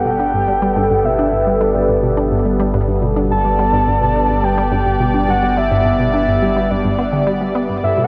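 A swirling, phased analog pad sits up front, holding a sustained Gadd9 chord with chorus, while a mellow, octave-layered synth lead carries the melody through chorus and tape echo. A squelchy, resonant blip pluck with a fast attack and short decay plays a riff from 0.1 s, and a round, deep analog bass holds the low end on G. Cut from a longer piece, this luminous, expansive stretch of sequencer-driven space music moves at 106 BPM in G major, bathed in a huge ambient reverb and the warbling pitch drift of worn cassette tape.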